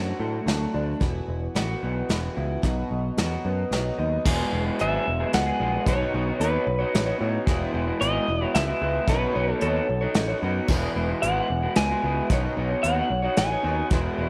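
A light, small-room reverb gives this short folk rock and heartland rock excerpt an intimate, close-up sound with a hopeful, open-road mood, set in a straight-feeling three-beat metre. Up front, an electric guitar played through a small old amp picks a warm, slightly broken-up, lo-fi riff with a subtle chorus, while a picked electric bass sits direct and present beneath it. Further back, a picked twelve-string acoustic guitar adds dark, woody, boxy accompaniment, its octave-doubled strings shimmering through an analog chorus. A soft brush drum kit enters at 0.5 s with a punchy kick, a medium-tuned snare, hi-hat and crash cymbal. At 4.8 s a bright, compressed electric slide guitar takes the melody with a slapback echo. The harmony moves from D through Esus2 and B, then settles into a steady alternation of Eadd9 and Badd9.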